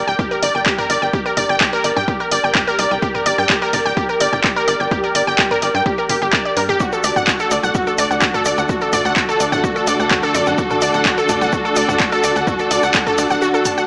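A straight 4/4 pulse at 127 BPM drives this hypnotic, melancholic melodic techno excerpt in G harmonic minor, where a bright, detuned unison pluck spins arpeggios with 12-bit sampler grit and tape echo over a tight sawtooth sequencer bass, a punchy, tape-warm electronic kick and analog drum machine handclaps, hi-hats and toms, while distant bowed strings fade in with vibrato and portamento, a dark, warbling wavetable pad with phaser joins on sustained chords at 7.2 s, shortly after the harmony moves from Gm to D, a grainy egg shaker sits close and dry in the background, and sidechain pumping breathes through much of the mix in a lush hall reverb heard as if through a small speaker.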